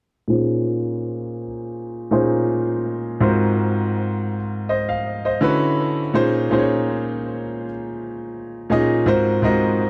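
A solo grand piano enters at 0.3 seconds, clear and boxy with short sustain, sitting up front through a low-pass filter and tape echo, with a filter sweep running until 6.1 seconds. This introspective, soulful R&B passage moves at 82 BPM in 4/4 with a light sixteenth-note swing in Bb minor, voicing Bbm9, Ab13 and D69 before returning to Bbm9 and Ab13. Light reverb and a dark production frame this short section of a longer piece.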